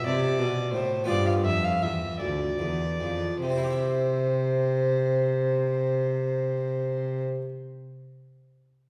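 Flowing and serene, this short cut from a baroque-style classical sonata movement in C major moves in 12/8 at roughly 47-61 BPM, slowing over its first 3.4 seconds as a G7sus4 eases to G7 and resolves on C at 3.4 seconds, with a period-style violin carrying the melody up front in a warm, reedy tone with light vibrato, a rich, close gut-string cello bowing the bass line, and a full, brilliant Italian-style harpsichord with three sets of strings supplying plucked accompaniment, heard from further back in a recital hall with a long, wet reverb.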